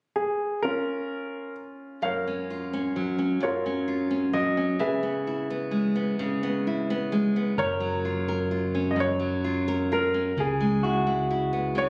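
Captured on a phone in the room, this short cut from a longer piece carries a club-like reverb and a soft, dulled top end that gives it an intimate, homemade feel. It is a nostalgic, heartfelt acoustic folk-pop ballad in F# major, moving slowly at 43 beats per minute in a straight 6/8. A warm baby grand piano carries the melody from 0.2 seconds, natural and up front with a short sustain and a touch of plate reverb, over chords that pass through C#6, F#maj7 and C#m7. At 2.0 seconds a fingerpicked nylon-string guitar takes up the accompaniment, its fresh strings and audible finger squeak lending a classical, close-up intimacy. From 7.6 seconds an electric guitar through a small old amp adds dark, slightly broken-up, lo-fi arpeggios shaped by harmonic tremolo and compression. At the same moment a mellow fretless electric bass settles in low, round and punchy, with a direct, amped tone that sits quietly beneath the other parts.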